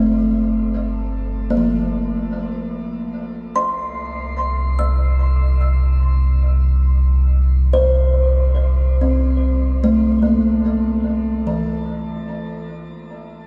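A kalimba and a deep, rumbling drone begin together in this serene, weightless ambient piece. The music moves in free time, cut from a longer work. The kalimba plays soft, woody arpeggios with a hollow, ringing fingertip pluck, spread across a broad range and carried by a diffuse ambient delay. Beneath it, the ominous drone holds the bass with a slow attack, long release and its own built-in reverb. Both sit up front over a harmony that shifts from Gm9 to C7 at 3.1 seconds. A moderate shimmer reverb with a long 6.4-second tail surrounds the dark production, where lossy compression artefacts can be heard, and the kalimba stops at 13.3 seconds just before the drone.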